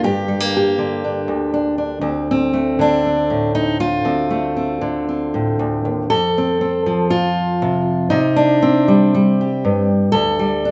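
A moderate, large studio reverb surrounds a single steel-string acoustic guitar, which sits up front with a warm, auditorium-like body. This is a reflective, wistful folk piece for solo fingerstyle guitar, taken from a longer performance and moving at 119 BPM in a straight 4/4, tuned to A4 = 444 Hz. The fingerpicked guitar spans a range from D2 up to A4 and plays alone for the full 10.7 seconds. The harmony opens on G minor and moves to D minor seventh, then a new section at 6.1 seconds turns to F major and C minor before settling on a bare D fifth chord. The brief passage carries a reflective, pensive mood throughout.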